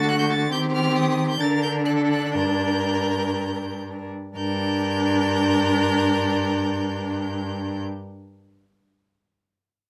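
A single bowed violin carries the melody high above the quartet, its rich, smooth tone shaded with vibrato and set slightly distant. This is a quick, restless and dramatic classical-period movement for string quartet in G minor, cut from a longer piece, moving in 4/4 at roughly 113 to 139 BPM with a rubato feel that slows down over the first 4.4 seconds before a new section begins. Beneath it, a second violin plays a clear, focused inner line in the middle register. A viola gives even, vibrato-laden accompaniment, and a cello anchors the bass, sitting up front with a smooth, rich sound. The harmony moves from D through Cm/Eb and a rootless Gm/D before settling on Gm, all four players bowing together through the 7.8 seconds of music. Close, detailed microphones and light reverb give the ensemble an intimate, finely etched sound.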